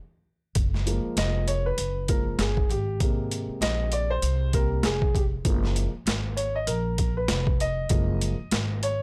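Relaxed and smooth, this jazz-hop cut from a longer hip hop piece moves at 98 BPM in 4/4 with a swung sixteenth-note feel, sitting in F# major and tuned slightly sharp at A4 = 441 Hz. After a brief break, a boom bap sampler-style drum kit and an upright bass arrive together at 0.6 seconds; the drums sound compressed, pitched down and overdriven, with a thumpy kick, a high-tuned snare and hi-hat, carrying the grit of a re-recording in a large room. The pizzicato upright bass has a woody, dark tone from its steel strings and stays low in its register. A warm grand piano enters at 0.9 seconds and takes a solo through to the end, moving over F#maj9 and G#maj9 chords. The bass, drums and piano all sit up front in a dry, gritty hardware recording with little reverb.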